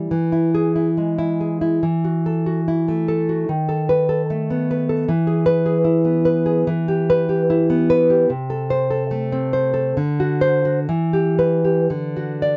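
Wistful and passionate, this brief romantic fragment for solo classical guitar unfolds in a rubato 2/4, its full-bodied, fingerpicked nylon-string guitar sitting up front in a dry, close 1970s-style studio sound with light reverb, as the harmony turns from E major toward Em, Am/C and D7 before reaching D at 11.9 seconds.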